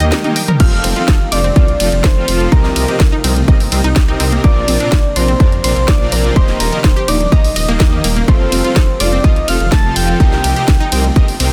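A dense, heavily limited master with digital ambience carries this driving, emotional progressive house excerpt at 125 BPM, where a drum fill from the house drum kit with its cracking snare gives way at 0.6 s to a punchy, up-front electronic kick, a deep, rumbling detuned saw bass with tube saturation anchors the Eb, F, Cm7, Bbadd9 progression, a mellow supersaw plays stabs and a bright unison pluck runs arpeggios in the background, both pumping with sidechain and digital delay, a shimmering, ethereal pad holds very quiet sustained chords, and a round octave-layered synth lead carries the melody with chorus, tremolo and delay over a gentle, wave-folded pluck tracing a second line above it.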